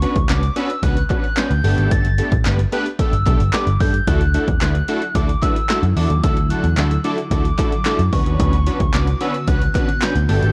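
Worn, warbling cassette tape with little reverb colors this summery, carefree dance-pop excerpt at 111 BPM, where a punchy analog drum machine and a dark, round, foam-muted picked electric bass sit up front beneath a fat, detuned sawtooth polysynth pumping through Bmadd9, Gadd9 and Dadd9 chords, while a hollow, woody clarinet-like synth lead carries the melody through chorus, phaser and dub echo, crisp group handclaps linger in the background, and a cloudy granular pad drifts in at 5.0 s.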